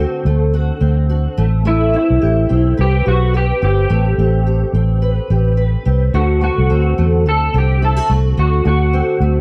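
A twangy, slightly broken-up electric guitar through a small old amp carries the melody up front from the start, its ensemble chorus and slapback echo giving this dreamy, nostalgic indie bedroom-pop excerpt a lo-fi shimmer at 107 BPM with a light 16th-note swing. Beneath it, a fingerpicked steel-string acoustic guitar with fresh strings adds chorus-and-vibrato accompaniment, while a dark, round, foam-muted electric bass sits punchy and prominent. The harmony moves from D7 to Am9 at 1.4 seconds and back to D7 at 6.1 seconds. The sound is dry and close, like a 1970s-style studio recording.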